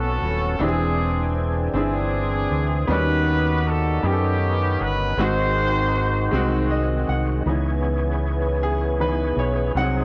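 A clear, loose jazz-style horn section carries the melody up front over a bright, worn baby grand piano, a thick, gritty overdriven tonewheel organ with slow rotary speaker, chorus vibrato and key click, and a round, punchy fingered electric bass, opening a slow, solemn and fervent gospel passage in 6/8 and C# minor at 52 BPM. The horns drop out at 6.7 seconds as the piano plays a fill from 6.3 seconds, then takes a solo from 7.5 seconds while a warm classical-style French horn section enters in the background with sustained chords as the harmony settles on C#m7. This home cassette recording from a moderate studio room, cut from a longer piece, gives the horns, piano and organ a vintage tape character.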